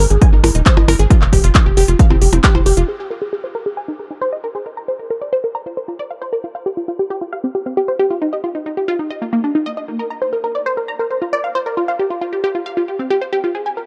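A lush, detuned unison pluck sits up front in this driving, bittersweet uplifting trance excerpt, spinning arpeggios with delay and sidechain pumping. For the opening seconds it is joined by a tight sawtooth sequencer bass, also pumping, a punchy electronic kick and a techno kit of handclaps, smooth hi-hats and percussion blips. From 2.9 s the pluck carries on alone under a filter sweep, in a dark, dry production.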